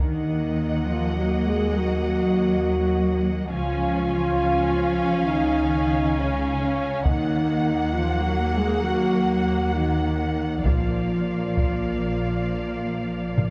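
A cinematic, epic orchestral film score with a heroic mood, it sets a dark, woody violin melody over a second violin line with soft-attack portamento, while a rich viola section accompanies, smooth-topped cello and distant double bass sections carry the bass, and a roomy French horn section holds sustained chords through a moderate scoring-stage reverb, until a taiko ensemble with heavy sticks enters at 7.1 seconds in this passage cut from a longer piece.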